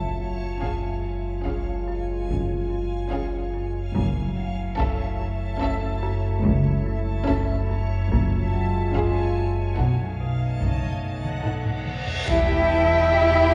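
A suspense film score cue in an uneasy, ominous 5/4, where a reversed, dreamy swelling texture and warm French horn chords hover over a boxy marimba riff, lush bowed cellos, double basses and a deep sine sub-bass drone, with a very quiet round timpani stroke at the start before rich vibrato violins, violas and a dry, close taiko ensemble enter at 0.6 seconds, all set back in a wet scoring-stage reverb until a drum fill, an electronic reverse cymbal and an impact at 12.3 seconds bring a brief, tight trombone chord.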